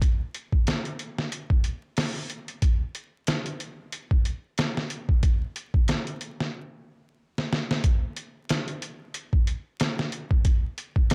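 A swung trip hop groove at 92 BPM in 4/4 opens the recording, its sixteenths pushed with a 56% swing. The only part is a sampler-style drum kit of kick, snare and hi-hat, playing from the start to 11.1 seconds; it sounds compressed and pitched down, with a thumpy kick, a medium-tuned snare and a gritty, tape-warm texture, sitting up front in a small room ambience. The mood is dark and brooding, carried by a dark, warm production with light reverb and a bed of vinyl crackle. After the opening groove the kit stops at 6.5 seconds, a drum fill breaks the pause at 7.3 seconds, and a new section begins at 7.8 seconds. Cut from a longer piece, the passage ends at 11.1 seconds.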